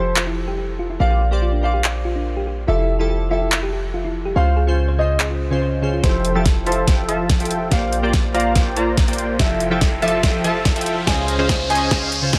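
Opening on a warm, boxy grand piano melody over glassy chorused digital keys, a round tine-like synth pluck arpeggio under a filter sweep, a deep boomy 808-style bass and a dubstep kit with a huge snare and bright hats, this bright, lush future bass excerpt in F major at 143 BPM in half-time pumps to the sidechain, and at 6.0 seconds a knocking electronic kick and a punchy detuned supersaw stab with its own filter sweep drive a build-up and drum fill, joined at 8.7 seconds by a background riser, all over Fmaj9, Bb69 and Dbmaj7 chords.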